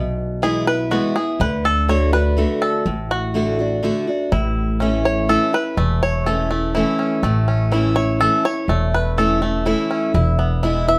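A boxy, picked old ladder-braced acoustic guitar and a growly, thumpy pizzicato upright bass open this virtuosic, rustic bluegrass passage in 3/4 at 124 BPM, joined at 0.4 seconds by an up-front, twangy, percussive banjo played with fingerpicks that carries the solo melody in A major over E, D and A chords, all tuned slightly flat to A4 = 437 Hz and set in a moderate studio reverb.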